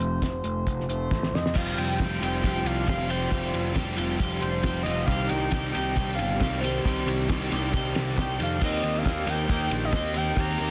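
An expressive sawtooth synth lead carries the melody in this moody, bittersweet indie rock excerpt, its smooth, sustained tone shaded by chorus, phaser, slapback echo and vibrato. Underneath, at 136 BPM in a straight 4/4 tuned to A4 = 436 Hz, a twangy, compressed twelve-string electric guitar and an overdriven electric guitar with subtle chorus and slapback echo sit in the background playing riffs, while a growly, overdriven picked bass drives the low end. The cloth-damped drum kit is dry, dark and up front, with a fat snare, tight kick, dark cymbals and a rolled-off top, and a short drum fill leads into the main section at 1.6 seconds. A breathy, whispered trumpet enters very quietly at 0.9 seconds with an intimate second line, and hollow group handclaps join in the background from 2.0 seconds. The chords move from F through Fsus2 and Cm to Eb6, all wrapped in light reverb and a dense, heavily limited modern master.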